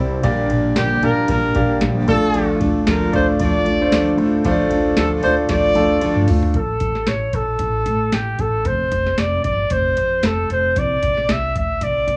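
A roomy, vibrato-laden trumpet carries the bittersweet, earnest melody of this piano-driven pop fragment from 0.8 seconds, over a clear, intimate concert grand and a picked steel-string acoustic guitar riff that both drop out at 6.6 seconds, with a woody pizzicato upright bass and a booming, tape-warmed analog drum machine, featuring a deep kick and metallic hats, carrying on to the end, all set in the light reverb and small-room ambience of a home cassette recording.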